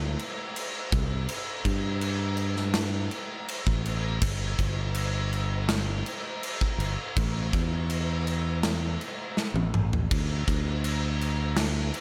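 Quiet-loud alternative rock at 82 BPM in a straight 4/4, this dark, brooding passage is cut from a longer piece and tuned to A4 = 442 Hz. A growling fingered electric bass, bright and overdriven, sits up front with a direct, amped sound, moving between G1 and G2 from the opening moment to 11.9 seconds. A big acoustic rock drum kit joins at 0.2 seconds, its punchy kick, medium-tuned snare, toms and crash cymbal heard in a big, pumping room and placed up front beside the bass. A drum fill runs from 9.4 to 10.1 seconds. Light reverb gives the pair a shared space across the single section.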